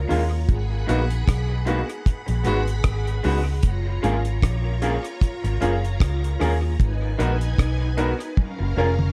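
Tender and sweet, this short lovers rock reggae excerpt moves at an easy, lightly swung pace over a progression that settles from G#m7 through C#7sus4 to a lingering F#maj9. A deep, dry drum kit with a tight kick, hi-hat, rim click and toms sits up front beside a round, foam-muted fingered bass, while a clear baby grand piano with long sustain and audible action noise carries the accompaniment. A dark, slightly broken-up guitar through a small old amp adds lo-fi stabs bathed in lush chorus and dub echo, shimmering vintage string-machine violins hold a soft second line, and a drum fill arrives at 8.4 seconds in a small room ambience.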